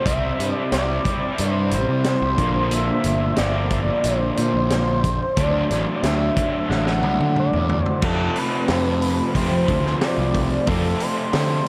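A gritty, screaming synth lead and a crunchy, double-tracked overdriven guitar open this psychedelic rock excerpt at 0.0 seconds, quickly joined by fuzz bass and a vintage drum kit. The mood is hypnotic and kaleidoscopic at a steady 90 BPM in a straight 4/4, with the harmony moving from C to Bb to D before shifting to F as a new section begins at 8.0 seconds. The sawtooth-and-square synth carries the melody with a guitar-like bite, sustained notes, vibrato, a filter sweep and a moving notch, colored by phaser and analog delay. Beneath it, the picked guitar riff sits up front with harmonic tremolo, while the fuzz-laden picked bass, also up front, adds overdriven weight. The acoustic kit has a punchy kick, a high-tuned snare and dark cymbals with a rolled-off top, and a drum fill from 6.7 seconds leads into the change. A huge ambient reverb with a long 7.5-second tail soaks the whole mix in a dreamy haze.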